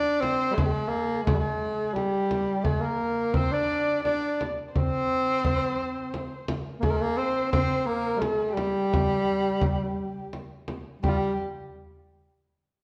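Persian modal ensemble music in G dastgah shur, soulful and melancholic at 86 BPM in a straight 3/4, with a mellow tenor saxophone carrying the melody up front with vibrato, a soft attack and classical phrasing, a dark, bowed kamancheh tracing an intimate second line with light vibrato and portamento, and a deep frame drum played with soft hands entering at 0.2 s, the ensemble sitting in a reverberant recital hall with a warm production in this short cut from a longer piece.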